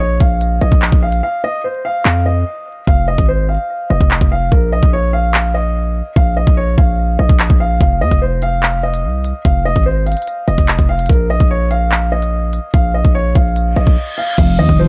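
A half-time drill groove drives this tense, dark hip hop excerpt, with an electronic kit of knocking kick, crisp hi-hats, handclaps and crash cymbal sitting up front alongside a heavy, distorted 808-style bass. The bass is aggressive and sine-based with a noise layer, a fast attack and a decaying tail, and it stays in a low register throughout. Over this, a dark baby grand piano carries the melody, its mellow, long-sustaining tone softened further by a low-pass filter as the harmony moves between Bb5 and Fm7 chords and an F7 voicing that omits the third. A brief break hits at 1.2 seconds, and the hi-hats are muted from that point until they return at 7.8 seconds. Near the end a reverse cymbal sweeps into another short break. At 14.4 seconds a clean, fingered electric guitar enters with a filtered, rounded sound, while vinyl crackle and very little reverb keep the mix dry and close.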